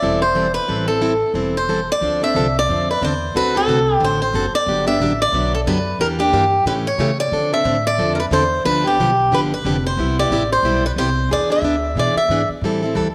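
Virtuosic and swinging, this short cut from a longer jazz manouche piece rides a brisk swung 4/4 in a minor key, moving from a brief opening passage into a longer stretch that cycles through seventh chords before landing back on A minor at 12.6 seconds. Up front, a bright, boxy swing-style acoustic guitar with fresh strings carries the picked melody, while a plugged-in steel-string acoustic guitar, warm and picked with audible finger squeak, supplies the accompaniment. A woody, thumpy pizzicato upright bass on gut strings anchors the bottom, all set in a wet echo-chamber reverb.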